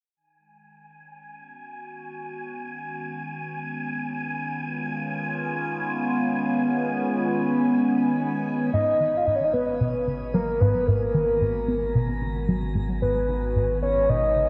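A soft, octave-layered synth lead carries the melody from 8.7 seconds, its round, full triangle tone, sub-octave support, vibrato and chorus sitting up front under shimmer reverb and analog delay. This is a hypnotic, expansive piece of ambient, sequencer-driven space music at 112 BPM in 4/4 with a straight feel, set in G# dorian and cut from a longer work. It opens at 0.2 seconds on a phased analog pad that fades in on a G#m7 chord, a swirling, nasal, wave-folded sound with slow attack and long release, treated with phaser, chorus and shimmer reverb. From 1.1 seconds a wind-like tuned noise texture adds an airy, breathy, dark layer high above, bathed in its own reverb and shimmer. When the second section arrives, a tight, driving sequenced synth riff with a detuned sawtooth and square-wave pluck enters alongside the lead, its filter sweeping through chorus and analog delay, while a deep, round sine sub bass fades in beneath. 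The whole sits in a wet scoring-stage reverb with a dark, warm production.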